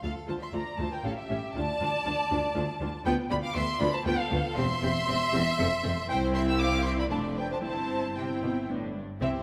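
Cheerful and lively, this quick classical-period movement for string orchestra moves in a brisk triple metre with a straight feel, cut from a longer piece. A warm violin section carries the melody up front, its bowed vibrato tone smooth and lush, while a second violin section adds a focused, rich inner line beneath it. Violas fill in the accompaniment with an even, silky sound, and the cellos sit distant in the background as the double basses, close and full, share the bass. All five sections play together from the opening to about 9.4 seconds, moving from a minor-key start through D minor and A7 before settling into C major around 3.1 seconds and closing on a G chord. A wet scoring stage reverb gives the ensemble a spacious, polished studio sheen.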